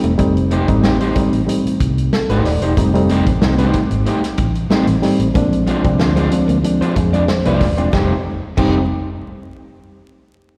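A straight 4/4 groove drives this gritty funk excerpt, built on a tight kick, a medium-tuned snare, hi-hat and dark crash cymbals from a distant, roomy soul kit. Beneath it, a vintage fingered electric bass sits dark and round, its foam-muted, amped tone anchoring an F9 vamp that shifts to Bb9 at 5.4 seconds before returning to F9. A reedy, worn electric piano, slightly out of tune and heard through its built-in speakers, punctuates with clean stabs and adds two short fills. A very quiet, compressed, picked electric guitar at the edge of break-up plays accompaniment from 0.5 seconds with slapback echo. A second, fingered guitar with a shadowy tone states its riff in a brief flicker at the start and returns at 5.4 seconds. The band sounds like a live gig heard through the venue's PA, with recital hall reverb and a layer of vinyl crackle.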